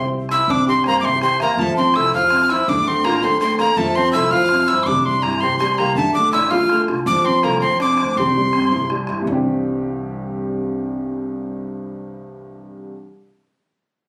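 Celtic folk jig in 6/8, bright and cheerful, cut from a longer piece. A breathy tin whistle carries the melody up front, with a crisp chiff, vibrato and lifted highs. Beneath it, a metal-body resonator slide guitar played with fingerpicks adds a nasal, metallic second line. A woody, boxy upright piano supplies the chords close to the ear, alongside a thumpy pizzicato upright bass on gut strings, while a boomy bodhran sounds distant, as if in a large room. The chords move through C, F and Dm before settling on Cadd9. The whistle and slide guitar stop at about 8.9 s and the bodhran at about 9.4 s, leaving piano and bass to carry on to 12.9 s. The sound is that of a phone recording in a club, with moderate reverb and compression.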